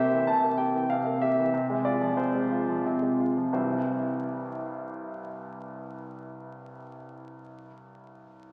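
Heard through the crackle of a very old 78 rpm record, a bright concert grand piano sits up front in a wet concert hall, its action noise audible and its bass deep. This short excerpt of an elegant, playful classical-period sonatina in C major, tuned to A4 = 436 Hz, moves in 3/4 at 85-99 BPM, easing its pace through the first 3.6 seconds. The solo piano passes from C7 through Fm/C before settling on C at 3.6 seconds.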